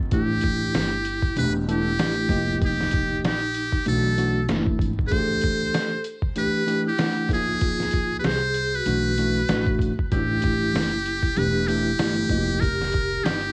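A swung 96 BPM groove in 4/4 drives this nocturnal, mellow jazz-hop fragment, built on a trip hop sampler-style kit whose compressed, pitched-down hits bring a thumpy kick, a medium-tuned snare and hi-hat under a gritty, tape-warm grain. A plucked upright bass with gut strings sits low beneath it, woody and dark, from 0.0 s to the close at 13.5 s. Up front, a trumpet with a metal mute carries the solo melody in a brilliant, buzzy, thin tone, punchy and forceful, with light vibrato and scooped notes in a jazz style, colored by cassette tape, analog delay and plate reverb. A worn, slightly out-of-tune tine electric piano, lightly overdriven as if through its built-in speakers, supplies the accompaniment until 12.7 s, while a vibraphone struck with medium mallets hangs in the background, metallic and ringing with a fast motor vibrato. The harmony cycles through A7sus4, Em7, F9sus4 and Bm7 and then Am7, Em11 and Fm7, all wrapped in a moderate room, home-cassette character and vinyl crackle.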